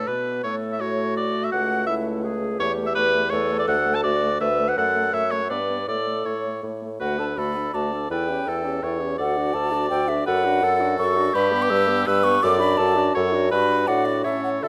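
An airy, hollow silver flute carries the melody with vibrato and tongued notes in this lively, cheerful excerpt of a quick classical-period movement for wind quintet, in D major at 165 BPM in 3/4. A clear, present oboe plays a second line up front with light vibrato, a mellow bassoon plays the bass, and a warm French horn and a clarinet set in the background fill out the accompaniment. The close, detailed sound carries light reverb, and the music moves into a new section at 7.0 s.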